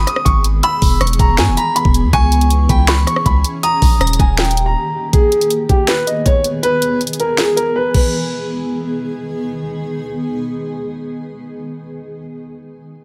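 Light reverb and a digital ambience frame this hard-hitting, brooding trap excerpt in G# harmonic minor, set at 160 BPM with a half-time feel. A dark, boxy concert grand piano carries the melody up front until 9.2 seconds, while a granular cloud pad holds blurred, evolving chords beneath it, bathed in its own built-in reverb. A crystalline FM synth bell with chorus and delay traces a second line in the background, and a deep, sine-toned 808-style bass with a fast attack sits up front until 4.8 seconds, when a brief break arrives. The electronic, tape-warm trap kit delivers a knocking kick, sharp snare, warm hats, finger snaps, rim clicks and crash cymbal, dropping out at 7.8 seconds. The harmony moves through G#m, E, C#m and D# before returning to G#m, and the pad lingers alone once the other parts have finished.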